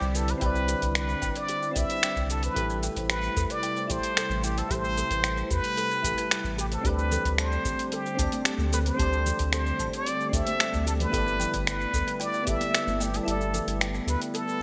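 A wistful sunset chillout excerpt in A minor at 112 BPM opens with a bright, plunger-muted jazz trumpet melody with a wah-wah bite and delay, set up front over soft, mellow electric-piano-like synth keys, an airy, breathy pad with chorus, a round sub bass and a gritty, tape-warm sampler-style drum kit of cabasa, finger snaps and hi-hat in gated reverb, joined almost at once by a woody, plucked kalimba with delay in the background and a deep, overdriven electronic kick that drops out at 12.6 seconds, while very quiet, ringing congas arrive at 7.1 seconds, all within a lush hall and a bright 1980s-style digital sheen.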